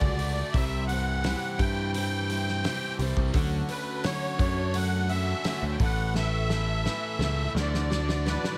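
With light reverb, this nostalgic, open-road folk and heartland rock excerpt in D major moves at a straight 86 BPM, with a reedy, airy musette accordion carrying the melody up front through plate reverb and analog delay, a boxy, octave-doubled picked twelve-string acoustic guitar with audible finger squeak adding shimmering accompaniment, a bright, double-tracked overdriven stack guitar playing a riff, a growly picked electric bass sitting forward, and a loose indie drum kit with a fat snare and punchy kick in a small room rolling into a fill at 6.1 seconds over chords moving from Dmaj7 and C to Asus2 and Dadd9.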